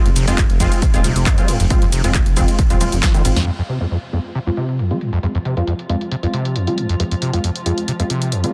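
A squelchy, distorted acid bass riff drives this dark, relentless peak-time techno excerpt alongside aggressive detuned rave stabs, a rumbling saw bass and a heavy kick that drop out as a drum fill runs toward 3.5 seconds, a punchy-snared techno kit with warm hats, and a swarming granular drone that creeps in behind at 4.8 seconds as filter sweeps move across the bass and stabs, all under a dense, heavily limited master.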